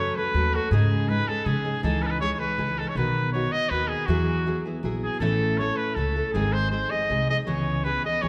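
In a brisk 3/4 at 160 BPM with a straight feel, this short excerpt of mariachi-style Mexican folk music moves through C# minor with a mood that is both romantic and festive. A bright trumpet carries the melody in a classical solo style, sitting up front yet sounding distant and roomy. A fingerpicked nylon-string guitar supplies full-bodied accompaniment with fresh strings and an audible finger squeak, while a woody pizzicato upright bass on steel strings anchors the low end. All three parts play together across the full 8.3 seconds, moving through a chord path that runs from F#m and G#sus4 through C#madd9, B, Eadd9, A and G# before settling on C#m7. A moderate concert hall reverb with a 2.2-second decay gives the ensemble a spacious, resonant setting.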